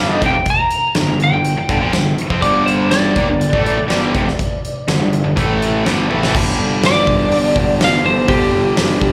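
Huge arena drums stand up front in this menacing, aggressive hard rock excerpt, with a fat snare and punchy kick ringing through a big room across crash cymbal, hi-hat, toms and kick from 0.2 seconds on. Set at 123 BPM in a straight 4/4 and G minor, it sounds like a live gig heard through the venue's PA, with club ambience and light reverb around the band. A slightly broken-up, compressed lead guitar carries the melody through a digital delay, while an overdriven electric guitar sits in the background playing a riff alongside a tight distorted guitar, both bright and picked. Underneath, a growly fuzz bass, direct and amped with overdrive, holds the low end. A drum fill at 6.1 seconds leads into the closing section, where the tight distorted guitar drops out at 6.3 seconds and the lead guitar takes a solo over a G5 power chord until the cut at 9.1 seconds.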